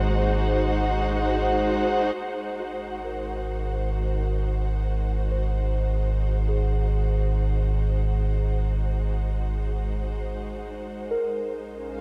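A veiled, con sordino string section and a round, deep analog bass open this serene ambient passage together, unfolding in free time over an Ab7 chord. The bowed strings hold sustained chords with gentle vibrato and a smooth top, sitting up front beside the bass, which carries a tube-saturated, evolving tone built from sawtooth and sine layers with a touch of ring modulation. At 2.6 seconds, muted, felt-like synth keys enter in the background with soft, decaying arpeggios, their intimate sound coloured by chorus, a filter sweep, a faint noise layer and a diffuse ambient delay. From 2.2 seconds both the strings and the keys fade in, and the harmony moves to Bbm7 at 11.2 seconds. A huge reverb with a long 8.5-second tail and a dark, warm production give this peaceful fragment of a longer piece a calm, enveloping glow.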